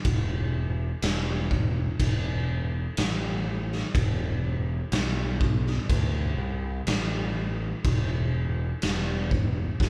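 Heavy and brooding, this short stoner and doom metal excerpt crawls along at 62 BPM in a straight 4/4, played live in one room with little reverb. A raw garage drum kit sits up front with a punchy kick, a medium-tuned snare and crash cymbal, its dark, rolled-off tone carrying a bright stone-room character. Entering at 0.1 seconds, a growling fingered electric bass, overdriven and amped, punches through between E1 and D2.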